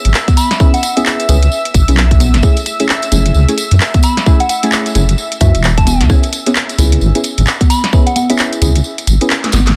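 A smooth, detuned analog pad with sidechain pumping opens this bouncy, moody two-step UK garage cut at 131 BPM, soon joined by a deep, sawtooth-edged wobble bass, a tight up-front electronic kick, a swung garage kit of congas, handclaps, hi-hats and a cracking snare, a jingly tambourine, a pure FM synth bell melody with phaser, delay and 12-bit grit, and dark filter-plucked chord stabs moving between C#m7 and F#m9, all in a dry, dense, heavily limited mix with vinyl crackle, until the kick drops out at 8.8 s and a drum fill arrives at 9.4 s.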